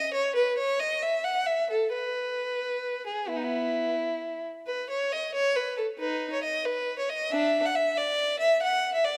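This is a classical, baroque-style suite movement for unaccompanied violin, a short 9.2-second cut from a longer piece. The mood is dance-like and serene, moving in 12/8 with a flexible, rubato feel. A single bowed violin plays alone throughout, ranging from B3 to F#5 with a warm, smooth tone and vibrato. The playing sounds even, and the instrument sits up front in the mix. Close, detailed microphones capture the violin's texture, while a moderate scoring-stage reverb gives it a soft halo of space.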